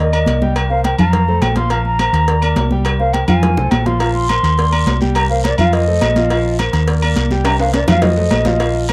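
Salsa at a brisk 209 BPM in Bb major, joyful and danceable, in which an airy, hollow concert flute with vibrato solos throughout over clear grand piano with long sustain, a dark, round hollow-body electric bass up front, ringing high-tuned congas, ringing metal-shell agogo bells and timbales, low-tuned cowbell and bongos and very quiet woody claves, with drum fills at 3.4 and 7.5 s and a raspy guiro joining at 4.0 s, all captured in a dry, close 1970s-style studio sound with light reverb.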